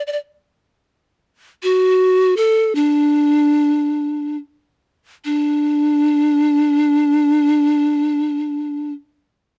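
A breathy bamboo pan flute plays alone in this short Persian excerpt, moving between D4 and D5 in dastgah mahur on D with vibrato, soft attacks and an audible chiff. The mood is stately and warm, in a slow 6/8 at 44-55 BPM counted in dotted quarters, with the pace slowing from 0.5 to 5.2 seconds before a second section begins and the flute falls silent at 8.9 seconds. Close, detailed microphones place the flute up front in a dry space with little reverb.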